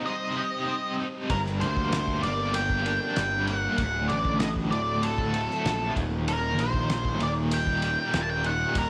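Psychedelic rock at 96 BPM with a dark, mysterious mood, this short cut opens on a bright, double-tracked cranked stack guitar riff with overdrive and tremolo, a dark octave-fuzz lead melody with slapback echo, and a lush, phased string machine sustaining chords in the background, before a fuzzy overdriven picked bass and a cloth-damped, thuddy drum kit with a fat snare, tight kick and dark ride cymbal join at 1.3 seconds over a Cm, Gm, D and Eb progression in light reverb.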